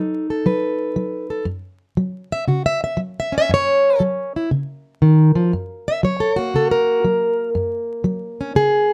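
A fingerpicked, plugged-in steel-string acoustic guitar with a boxy parlour tone sits up front, carrying this short excerpt of soulful, rollicking acoustic country blues on its own with a swung feel in 4/4. Its solo passage runs through the first 5.5 seconds over B7, F#5 and C# chords, reaching F# at 5.5 seconds as a new section begins. Light reverb and a layer of vinyl crackle give the recording an aged, intimate character.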